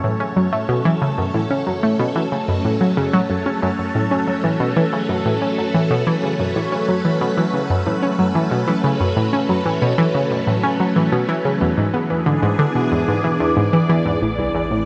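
Bathed in a huge, wet reverb, this cosmic, expansive slice of sequencer-driven space music sets a bright, round analog pluck riff with chorus and analog delay over a swirling, warbling phased string machine that fades in beneath it through the first 14.2 seconds, moving from F# minor to E7 before a fat, detuned analog bass arrives at 14.2 seconds on an A minor chord.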